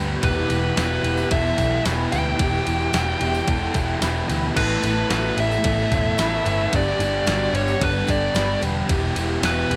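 A straight 4/4 pulse at 111 BPM from a crisp, thumpy 8-bit drum machine playing kick, snare, ride and crash drives this wistful, blissful shoegaze and dream pop excerpt, where a round, foam-muted vintage bass sits under a thick, dark fuzz guitar riff with ensemble chorus, an overdriven guitar riff bathed in reverse reverb, and background arpeggios from a slightly broken-up guitar through a small old amp with analog chorus, slapback echo and plate reverb, while a nasal lead guitar with a parked wah carries the melody from 0.2 seconds over Emadd9 and Asus2 chords and a very quiet, jingly tambourine joins at 0.5 seconds in a small room.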